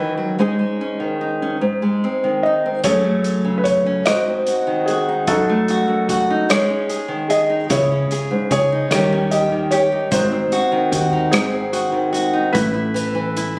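Acoustic folk-pop ballad in a straight 6/8, melancholic and reflective, cut from a longer piece. A felt-muted upright piano carries the melody with a soft, intimate tone, audible action noise and short sustain, over an up-front, fingerpicked nylon-string guitar whose classical warmth includes the odd finger squeak. A loose indie drum kit with a punchy kick and rolled-off top enters on hi-hat, kick and rim click at 2.8 seconds, and a growly, round fretless electric bass joins at 7.7 seconds, all captured on a phone in the room with light studio reverb.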